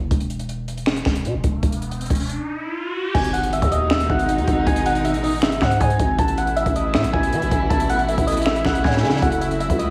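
A growling, buzzy 808-style bass sits up front in this menacing, brooding half-time trap piece, joined by a compact cocktail drum kit with a punchy kick, high-tuned snare, finger snaps, hi-hat and crash, its dark, rolled-off sound heard in a small room. An electronic riser builds from 1.5 s into an impact at 3.1 s, where soft, round electric-piano-like synth keys, coloured by chorus, phaser, low-pass filter and tape echo, arrive over dark, bowed chamber strings with expressive vibrato. A drum fill leads to a worn, boxy grand piano entering very quietly at 9.2 s, in a dreamy, reverb-soaked mix.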